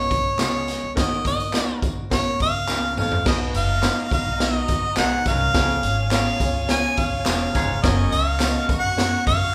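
Uptempo 1960s-style soul at 105 BPM in a straight, danceable 4/4, with a warm, live-band feel and the sense of being cut from a longer piece. A harmonica carries the melody up front with light vibrato and scooped notes in a jazz style, while a clear, worn grand piano with long sustain sits in the background beneath it. A woody, dark pizzicato upright bass anchors the low end against a raw garage drum kit that is gritty and saturated, with a boomy kick, a pumping small-room sound and a rolled-off top, plus distant group handclaps and tambourine. A raspy, punchy baritone saxophone enters at 1.0 s with a roomy riff, and after a drum fill a lush, bowed violin section comes in at 3.3 s with a rich, focused second line. The chords move from Db through Ebm and Bbm to Cb, Db and Gb, all captured as a band playing together in one room with a moderate large-studio reverb.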